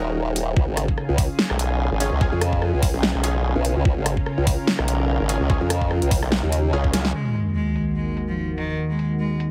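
Heavy wobble dubstep with a chaotic, half-time swing, opening straight into a drop where an overdriven, formant-swept wobble bass grinds up front, joined by a second at 1.5 seconds, beneath a lush, warbling detuned pad and bold, nasal orchestra-hit-style stabs trailing reverb and delay. A knocking electronic kick and a big-room kit with a huge snare and metallic, filtered hats drive the section until a drum fill at 6.9 seconds. At 7.1 seconds a sub drop lands as a clear, boxy solo cello with vibrato and delay takes the melody over the sustained pad, all pressed into a dry, heavily compressed radio-like sound.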